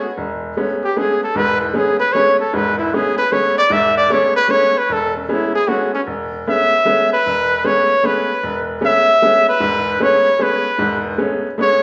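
A swung jazz waltz at 153 BPM in A major, this short cut has an open, searching mood built on a lingering Amaj9 chord. A bright, woody upright piano with audible action noise and short sustain comps from the start, and the trumpet enters at 0.8 seconds to take the solo melody with vibrato, scooped notes and a smooth top. Both sit up front in a large studio room with a lush reverb, captured as a band playing live together.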